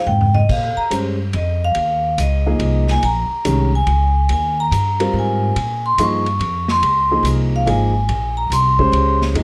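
Modal jazz in a swung three-four, this hypnotic, spiritual excerpt opens with a brief drum fill on a dark, vintage kit as a ringing, metallic vibraphone, played with medium hard mallets and the motor off, takes an up-front solo across the whole passage. Beneath it, an intimate upright piano with audible action noise comps over a shift from Ebsus4 to Bbm11 at 5.6 seconds, while a woody pizzicato upright bass anchors the low end. The drums, with their punchy kick and dark cymbals, sit well back in a small room under light reverb.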